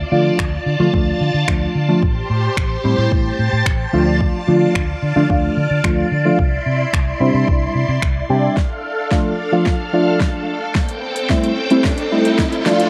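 A moderate spring reverb lends this short dance-pop excerpt a roomy sheen, with the drums and a chord stab sitting up front. A deep house kit supplies a deep kick, fat snare, metallic hats and finger snaps with a tape-warm edge. A mellow stab built from detuned sawtooth, triangle and sine tones carries the accompaniment with a fast attack, chorus and phaser. Above it, a vintage string machine holds swirling, warbling sustained chords brightened by ensemble chorus and phaser. The string machine, the stab and a round, foam-muted electric bass all pump against the kick. The bass drops out at 8.5 s, and from 8.6 s a build-up begins with a drum fill and a filter sweep, joined by an electronic riser at 10.4 s, keeping the bittersweet yet driving mood over a straight 4/4 pulse.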